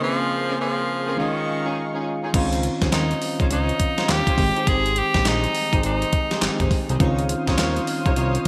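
An edgy, forceful tenor saxophone leads this bouncy, upbeat new jack swing R&B excerpt at 103 BPM with a swung 16th feel, playing a jazz-style solo with scooped notes, vibrato and digital delay until 6.7 seconds. It floats over a break of soft, round electric-piano-like synth keys with chorus and tremolo, a lush, airy unison pad in the background, and expressive bowed string stabs moving through chords from Bbm9 to Eb9sus4. At 2.3 seconds a fat, detuned analog bass and a thumpy, up-front 12-bit drum machine with handclaps and gated reverb kick in, all set in a bright 1980s-style digital production with plate reverb.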